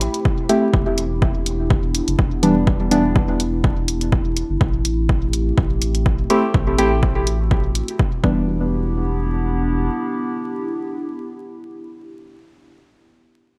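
A layered electronic hi-hat and a round, dark analog bass that pumps under sidechain until 9.9 s open this deep, cavernous dub techno excerpt at 124 BPM in E minor, joined at 0.3 s by an overdriven, punchy electronic kick drum that sits up front. Soft, mellow chord stabs with chorus, phaser and dub echo drift over Am7 and Em7 changes, while a warbling, nostalgic tape-like pad with a slow attack and detuned, lo-fi character sustains chords under a filter sweep through 8.5 s. Light reverb and vinyl crackle colour a bright 1980s-style digital production. The drums drop out near 8.3 s and the bass follows at 9.9 s, leaving the stabs and pad to carry the final seconds.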